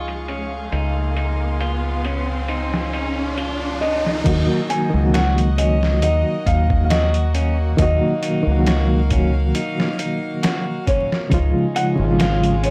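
Trip hop at 68 BPM in Eb dorian, this smoky, brooding excerpt moves from a Db chord to Ebm at 4.3 seconds, where an electronic riser comes to a stop. A felt-muted upright piano carries the mellow melody through dub echo over a barky, overdriven reed electric piano with tremolo, sampler grit and tape echo. A round, dark fingered bass with tube saturation sits up front, and a compressed, pitched-down sampler-style kit with a thumpy kick enters at 0.1 seconds. A chamber violin section, bowed with light vibrato and gut-string tone, holds sustained chords low in the mix, while a clean, picked electric guitar adds arpeggios through spring reverb and tape echo. The whole recording carries a dry, gritty hardware sound with vinyl crackle and a low-pass filter.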